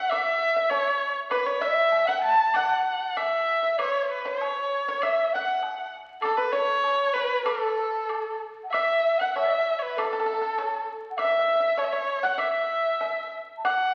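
Graceful and festive, this rubato fragment of Chinese traditional chamber music at 98 BPM in 2/4 sets a rich, up-front bowed erhu melody with vibrato and portamento over an airy, tongued bamboo xiao and a dry, percussive fingerpicked pipa as second lines, with a woodblock in the background, all heard through a recital-hall reverb and the crackle of a very old 78 rpm record.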